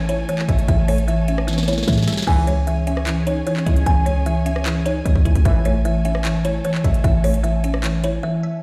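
A half-time trap groove on an electronic kit with a hard-clipped kick, sharp snare, crisp hats, handclaps, rim clicks and a crash, all up front, drives this brooding, hard-hitting hip hop excerpt, with a fill from 1.5 to 2.3 seconds, as a deep, boomy 808-style bass anchors a woody kalimba melody with delay, a round FM mallet-like synth pluck with chorus and low-pass filtering, veiled con sordino strings holding lush chords, and brief, soft-attack clear brass stabs at 2.3 and 5.5 seconds, all sounding dry yet carried by a bare stone room before a short break.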